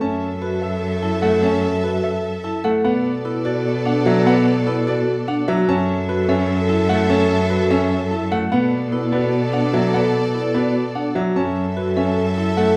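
A warm, bowed solo cello sits up front, carrying the bass between F#2 and B2 with vibrato and a smooth top in this propulsive, hypnotic stretch of minimalist classical pattern music, cut from a longer piece. A clear concert grand piano plays the most prominent accompaniment figures from F#3 to C#4, its tone smooth and slightly vintage with a deep low end. A bright, brilliant baby grand piano carries the melody higher up, between B4 and A5, while a mellow French horn holds a soft-attacked second line on A4 with light vibrato from the background. A lush symphonic string section sustains focused, bowed chords that alternate between F#m7 and Bm7, and a metallic vibraphone joins at 0.4 s with ringing arpeggios played with medium hard mallets and a medium motor vibrato. The pulse runs at 296 eighth notes per minute in a straight 7/8, and a moderate recital hall reverb gives the ensemble a sense of space.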